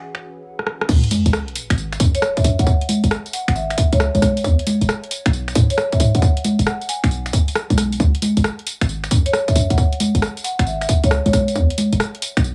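Soulful and skippy, this excerpt from a longer UK garage track rides a two-step groove at 135 BPM in C# minor, its sixteenths swung at 66%. A woody marimba struck with medium mallets carries the melody from the opening, its rosewood tone trailed by dub echo, while an ethereal, detuned pad with ensemble chorus, built-in reverb and sidechain pumping sits mellow in the background for just the first 0.9 seconds. The garage kit fills out the rhythm with congas, crash, finger snaps, bright hats, rim clicks and tambourine, and a short drum fill leads into the drop at 0.9 seconds, where a tight, up-front electronic kick and a punchy, sine-based 808-style bass with a noise layer, fast attack and decaying tail arrive together. A sub drop sounds underneath as an impact from 0.9 to 2.7 seconds, and the harmony moves between C# and E chords. The mix is dry, with the drums and bass pushed forward and the marimba sitting just behind them.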